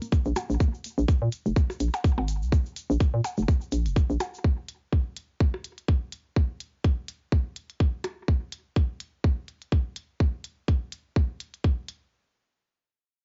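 A tight, layered electronic kick drum sits up front in this hypnotic, quirky minimal techno at 125 BPM with a swung 16th feel, joined by a punchy, knocking FM bass with sidechain pumping until 4.2 seconds, clicky tape-tinged hi-hats, up-front percussion blips echoing through analog delay, a grainy egg shaker in the background, and a brief hollow square-wave pluck with chorus that vanishes after 0.5 seconds, all captured in a dry, muffled cassette home recording.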